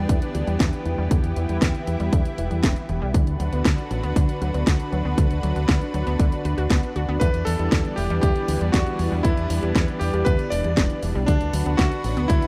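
Driven by a steady, straight 4/4 pulse at 118 BPM, this bittersweet, danceable italo disco cut in E minor rides a punchy, overdriven electronic kick sitting up front, layered with a house kit of cracking snare and bright hats that carries the same grit and small-room ambience. A fingered electric bass, run through an envelope filter and heard direct and amped, holds the low end between E1 and E2 with a warm, up-front tone. Above it, a thick, detuned sawtooth pad sustains chords through chorus, while a bright, punchy, wave-folded pluck spins arpeggios in the background, trailing tape echo. The harmony alternates between Em7 and Bm. At 7.2 seconds a clear, vintage electric grand piano enters with the melody between D4 and D5, its clangy low register and tape echo adding a lift to this dry, close, 1970s-style excerpt cut from a longer piece.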